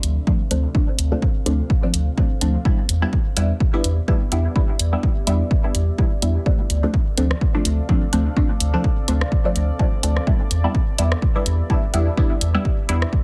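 The recording is fairly dry overall, with a tape-warm analog drum machine and a punchy electronic kick that were re-recorded in a large room, the kick sitting up front. This nocturnal, cavernous dub techno piece moves with a swung sixteenth-note feel in 4/4, cut from a longer track. A deep, round sub bass with a soft triangle and square-wave tone holds the low end, up front and pumping against the kick, which arrives at 0.3 s. Filtered dub chord stabs, muted and detuned with a sawtooth plucked edge, pass through a phaser, 12-bit sampler grit and dub echo. Alongside them, a moody, mellow pad of detuned sawtooth unison and sine sub octave sustains chords with slow attack, chorus and its own reverb, breathing with sidechain pumping. The hi-hat and rim click of the drum machine ride over a harmony that alternates between Dm7 and Em7 throughout.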